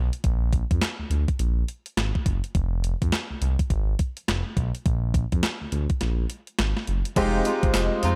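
A short cut from a longer new jack swing R&B piece in F dorian, set in digital ambience, opens on a smooth, gliding synth bass with portamento and a clean, thumpy 12-bit drum machine of kick, snare, hi-hat, handclaps, tambourine and crash cymbal bathed in gated reverb, swinging confidently at 104 BPM over Bb7 and Fm chords. After a break from 6.0 seconds, at 7.2 seconds a polished baby grand piano, a shimmering, chorused pulse-width pad holding sustained chords, and lush bowed string stabs with digital delay arrive on an Fm7, giving the bouncy groove a retro, expressive lift.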